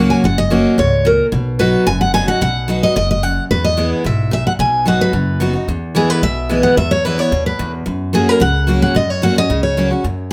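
A lively, joyful bluegrass excerpt at 220 BPM opens with two picked steel-string dreadnought guitars up front, one bright with fresh strings and one warm. Both are full-bodied with audible finger squeak: one carries the high melody, set in plate reverb, while the other picks the accompaniment, all over a woody, dark and thumpy pizzicato upright bass. The chords move through F#, B and E, with a new section arriving at 5.7 seconds, and the trio sits in a moderate studio room.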